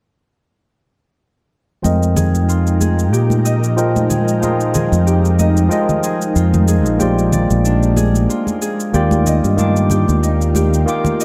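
A dark, warmly produced hall sheen frames this wistful sunset chillout excerpt at 93 BPM in F dorian, where a barky, up-front tine electric piano with a filter sweep and delay and a ringing fingerpicked Celtic harp play over a growly, up-front fingered electric bass, hard-handed congas, a tape-toned cabasa and, from 2.3 seconds, an ethereal detuned sawtooth pad, moving from Fm11 to Bb13 and Ebmaj9 with a lightly swung sixteenth feel.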